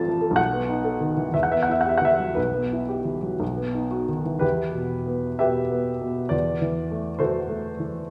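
Passionate and brooding, this romantic character piece for solo piano unfolds in E minor at a slow, flexible pace of 56-69 BPM in 6/8, with rubato pulling the dotted-quarter pulse back and forth. A baby grand piano carries the whole 8.1-second fragment, cut from a longer work, ranging from A1 up to B5 with a worn, present tone that sits up front. The harmony moves from B7 to Em, through Em/B to a B chord, before the second section at 4.4 seconds returns to Em and moves to F#m7b5/E at 6.3 seconds. The piano is tuned slightly low, to A4 = 438 Hz. A wet recital hall reverb lingers around the instrument, and the listener seems placed further back in the room.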